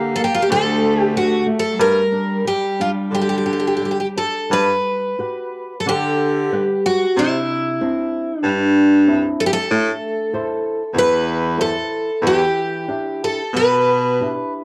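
Mournful and longing, this rubato fado-style ballad in 4/4 moves at 84-98 BPM from G minor to G major at 4.5 s, with a shimmering, octave-doubled twelve-string acoustic guitar carrying the picked melody up front, a reedy, gut-string cello with light vibrato bowing a second line until 4.2 s, a thumb-plucked flamenco guitar with audible finger squeak supplying accompaniment, and a punchy baritone saxophone with scooped notes holding the bass from 0.5 s, all in small room ambience with moderate spring reverb.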